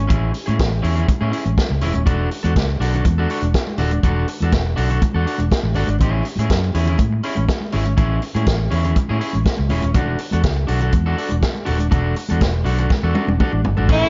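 A straight, steady disco groove drives this joyful, glamorous cut from a longer piece, built on a vintage acoustic drum kit with a punchy kick, a medium-tuned snare and gated reverb, sitting up front with a rolled-off top. A round, amped fingered electric bass anchors the low end, also up front, while high-tuned congas ring softly in the background under soft hands. A twangy, picked electric guitar at the edge of break-up fills in the accompaniment as the harmony moves between Amaj7 and E9sus4. A drum fill from 12.9 to 13.9 seconds closes the passage, and at 13.9 seconds a raspy, gritty tenor saxophone with vibrato breaks in on a single E4, joined by a clean tonewheel organ with key click, chorus vibrato and a slow rotary speaker, plus a reedy, lightly overdriven electric piano with fast tremolo that is barely audible. The whole piece sits in a studio reverb with a softened top end.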